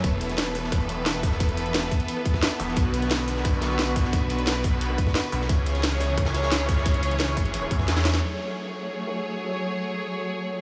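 Opening on a drop, this tense, aggressive excerpt of dark technical drum and bass at 176 BPM in F# minor sets lush bowed symphonic strings holding sidechain-pumped chords over a snarling, detuned sawtooth bass with growling distortion, a tight up-front electronic kick, a low-pass-filtered electronic kit with cracking snare and metallic hats, and a very quiet, gritty breakbeat kit, all bathed in huge dreamy reverb. The kick drops out at 7.9 s for a drum fill, the bass stops at 8.2 s and the electronic kit at 8.3 s, leaving strings and breakbeat on an F#madd9 chord.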